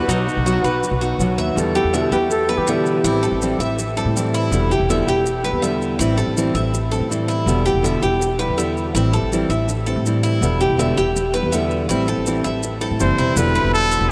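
A metallic, up-front Cuban tres picks bright arpeggios on doubled strings through this sultry Cuban son and guajira passage, cut from a longer piece, over a full-bodied, fingerpicked nylon-string guitar, a woody, thumpy pizzicato upright bass and close, grainy maracas, as the harmony sways between Em7 and Am7. A smooth-topped trumpet with vibrato sings a brief solo line at the opening and returns at 13.0 seconds, while a breathy, reedy jazz flute with a crisp chiff adds a short second line from 1.6 seconds. A huge, wet ambient reverb places the whole group in a vast, echoing space.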